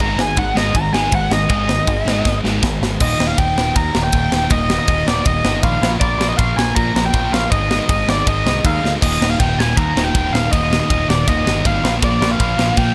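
A rowdy, energetic punk rock excerpt at 160 BPM opens with a smooth, overdriven lead guitar solo up front, carrying its delayed melody over a tight metal drum kit with bright cymbals, a medium-tuned snare and a tight kick, plus a growling, picked electric bass with overdriven bite. Behind them sit two sludgy distorted guitars and a very quiet, double-tracked fuzz guitar playing low riffs, with one of the sludgy guitars dropping out at 3.0 seconds and returning at 9.0 seconds. Drum fills mark 2.3 seconds and 8.8 seconds, light reverb sits over the mix, and the kit has an airy, polished big-room sound.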